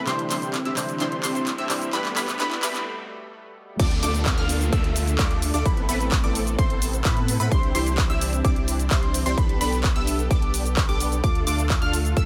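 In a straight 4/4 feel, this uplifting, euphoric slice of festival progressive house opens with a build-up where a layered big-room kit of crash, handclaps, hi-hat and shaker plays a fill beneath a lush, chorused pad, delayed detuned pluck arpeggios, a punchy filter-swept supersaw riff, background risers and downlifters, and a bright, twangy clean electric guitar heard only until 2.8 s; then, after a brief break, the drop lands at 3.8 s with an up-front electronic kick and a deep, saturated sub bass, while sidechain pumping moves the pad, pluck, stab and bass under light reverb.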